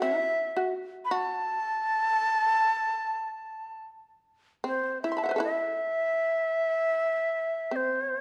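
A dark, warm production sets this short cut from a longer piece of Japanese chamber music inside a moderate recital-hall reverb, with both instruments close and up front. A breathy, reedy shakuhachi carries the meditative, solitary melody over a fretless shamisen, whose buzzing, percussive plucked second line sits a little lower in the mix. The music moves freely around 78 BPM in 4/4 in the A kumoi mode, shifting into a new section at 4.6 seconds before the cut ends at 8.2 seconds.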